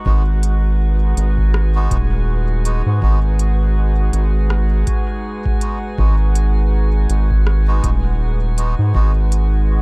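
A dry room sound frames this hazy, spacious ambient dub excerpt at 81 BPM in G# minor, swung on the 16ths and resting on a single G#m7 chord, where a round, dark analog bass sits up front beneath a deep, overdriven electronic kick in the background, crisp hi-hats and rim clicks from an organic electronic kit carry dub echo, reedy, breathy melodica stabs ring through their own dub echo, and a warbling, nostalgic tape-like pad with chorus and reverb sounds alongside a glassy texture of drifting overtones.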